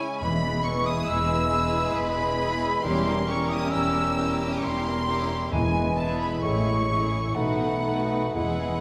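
A slow, serene romantic orchestral passage in E major and 3/4 opens with rich, vibrato-laden violins carrying a focused melody high in the treble, while a pure silver flute doubles that same register above mellow cor anglais, a dark and distant clarinet, and a second violin line murmuring in the background. Beneath them, expressive violas with portamento, a very quiet French horn section holding sustained chords, and ringing, fingerpicked harp arpeggios fill out the texture. At 0.2 seconds a lightly vibrato bassoon, lush cellos and focused double basses settle in underneath, along with articulate, close and dry timpani struck with hard mallets, which drop out and then return at 5.5 seconds. The tempo moves freely with rubato at roughly 58-71 BPM as the harmony passes from E through Edim7 and back to E, then on to Amaj7 and B7. A reverberant recital hall gives the whole short, warm fragment of a longer movement a gentle glow.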